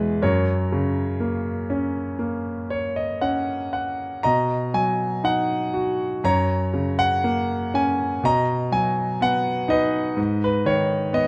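A solo concert grand piano opens on an F# chord, setting a calm, warm mood in this lyrical classical excerpt in B major. The tempo sits at 60 BPM in 4/4, played with a free, rubato feel, and the harmony moves from F# to B, back to F#, then B again before settling on G#m near 10.2 seconds. The piano spans E2 to A#5, its tone clear and smooth with a deep bass and a slightly vintage character, and a brief fill appears between 2.2 and 4.2 seconds. Close, detailed microphones keep the instrument up front, while moderate recital hall reverb with a 1.9 second decay surrounds it. The passage runs 11.3 seconds, cut from a longer piece.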